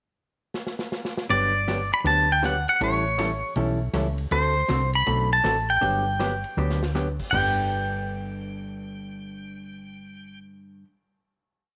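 A bright, twangy pedal steel guitar with slapback echo sings short song-like phrases with fingerpicked slides and volume swells over a cheerful, down-home western swing groove at 159 BPM in G major, backed by a dark hollow-body jazz guitar chunking four-to-the-bar rhythm, a round, woody fretless bass walking up between two-beat roots and fifths, and a punchy vintage drum kit with dark cymbals that enters with a fill at 0.5 seconds, keeps a backbeat and ride pattern, and stops at 7.4 seconds as the band rings out on a final G chord in a moderate echo-chamber reverb.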